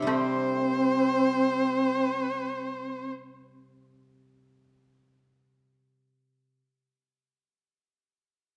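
A rich, bowed erhu sings the melody up front, with vibrato and smooth portamento, in this brief, festive and graceful fragment of Chinese traditional chamber music in free time. Alongside it sound a breathy, mellow low xiao in bamboo tones and a dry, percussive pipa set in the background, while a silvery, ringing steel-string zither plucked with fingerpicks carries on alone from 3.1 s until 6.6 s and a very quiet woodblock sounds only briefly near the start. The recital hall reverb lends the ensemble a wet glow.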